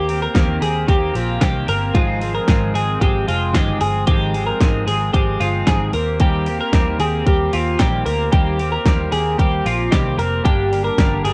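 Jangly indie pop at 113 BPM in Eb major, nostalgic and breezy, with an up-front twangy twelve-string electric guitar playing a picked accompaniment through analog chorus and cassette tape beside a second bright twelve-string playing arpeggios with subtle chorus and analog delay, a dark, round foam-muted picked bass, and punchy, layered pop drums with a fat snare and 12-bit sampler grit entering at 0.1 seconds, all moving through Eb6 and Ab6 toward Gm in a light-reverb home cassette recording cut from a longer piece.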